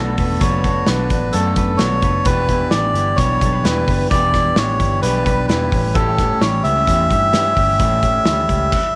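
A straight 4/4 pulse at 130 BPM drives this restless, bittersweet jangly indie pop snippet in E dorian, where a loose acoustic drum kit with a punchy kick and shadowy cymbals in a pumping small room sits up front beside a reedy, breathy melodica carrying the melody, while a foam-muted, round, amped vintage bass anchors the low end, a bright, twangy guitar through a small old amp picks out accompaniment in the background, and a second slightly broken-up, dusky guitar picks arpeggios through tape echo over Bm7, Em7 and A7, all wrapped in light reverb.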